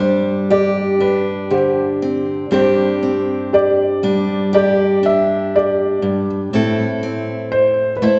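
A felt-muted upright piano carries a soft, mellow melody up front through this hopeful, tender acoustic folk-pop ballad fragment, over a bright fingerpicked steel-string guitar with audible finger squeak, both bathed in a church-like reverb as the harmony rests on Gsus4 before turning to A minor at 6.5 seconds.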